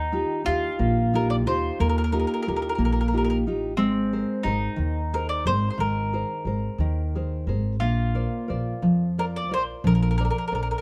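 A nylon-string guitar, an upright bass and a mellow second mandolin open this excerpt of a lively, romantic Italian folk serenade, set in Eb major in a rubato 6/8 at 60 BPM counted in dotted quarters. The fingerpicked guitar sounds full-bodied and up front, with finger squeak, while the pizzicato bass has a woody, steel-strung tone down low. At 1.2 seconds a second picked mandolin enters with the melody, its round double-string voice sitting forward and touched with plate reverb. The harmony moves from Ebadd9 to Abadd9 to Bbadd9, giving the serenade a soft, open colour. The production is dark and warm, with a light reverb around the small acoustic group.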